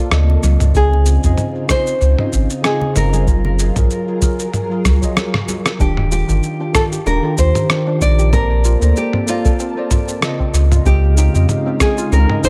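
Sunset chillout at 95 BPM with a gently swung sixteenth feel, relaxed and smooth, where a bright nylon-string guitar carries the melody over a clean tine electric piano and a silky, dark string machine with ensemble chorus, both guitar and piano trailing dub echo. A round, up-front sub bass and a dry, overdriven electronic kick anchor a gritty sampler-style kit of rim click, shaker and toms, while very quiet hand congas play until 5.6 s, stopping partway through a drum fill and brief break. From 5.8 s a soft, detuned, wave-folded pluck adds chorused arpeggios in the background as the chords move from Dbmaj9 and Gbmaj9 through Ebmaj9 and Bbmaj9, all set in an echo-heavy mix with light reverb.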